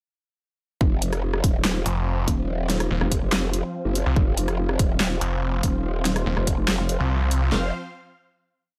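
A growling, saturated wobble bass with chorus and overdrive anchors this heavy, menacing half-time dubstep piece from 0.8 seconds, joined at 1.9 seconds by a snarling, detuned sawtooth bass in chopped, distorted phrases, while punchy layered electronic drums with a huge snare, bright hats, handclaps and rim clicks sit up front in a small, dry room beneath lush supersaw chords pumping through a low-pass filter, all closing on a final chord.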